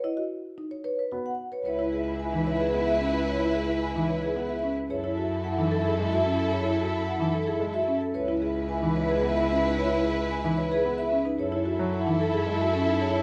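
Soft-mallet marimba arpeggios, woody and round, carry this bright, hypnotic passage of minimalist classical pattern music in C# minor, moving at 111 BPM in a straight 3/4. A metallic, ringing vibraphone with a fast motor vibrato sings the melody above it from the start. A dark baby grand piano, intimate, with audible action noise and short sustain, enters at 1.1 seconds with low accompaniment. At 1.7 seconds the texture fills out: a distant French horn holds a second line, a lush bowed violin section sustains chords with a smooth top, and a single focused cello supplies a rich bass. After an opening F#7sus4, the harmony sways between C#m7 and F#m9, heard through a moderate recital-hall reverb in a church or concert-hall setting, in a passage cut from a longer piece.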